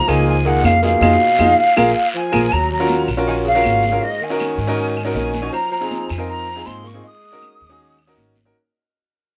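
A breathy flute sings the melody up front from the opening, alongside a tenor saxophone's smooth, scooped second line in the background and a dark, woody pizzicato upright bass, setting a lively, danceable Afro-Cuban jazz groove. A clear baby grand piano adds long-sustaining accompaniment, while background claves, damped high-tuned congas and a raspy guiro fill out the percussion, and the flute, saxophone and piano carry a cassette-tape tint in a modest small-room space. A band accent arrives at 1.0 seconds with a fill leading into the second section at 2.5 seconds, where this cut from a longer piece begins to fade out.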